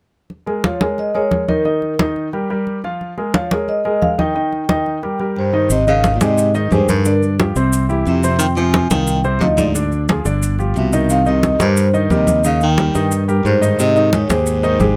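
Low-tuned, ringing congas open this sophisticated, danceable Afro-Cuban jazz passage at 178 BPM in Ab major, joined almost at once by an up-front baby grand piano with short sustain and a metallic vibraphone melody played with soft mallets and slow motor vibrato, before a mellow baritone saxophone second line with subtone and scooped notes enters at 5.4 s, followed at 5.7 s by a bright, growly fingered electric bass and grainy maracas, in a close, detailed sound with little reverb.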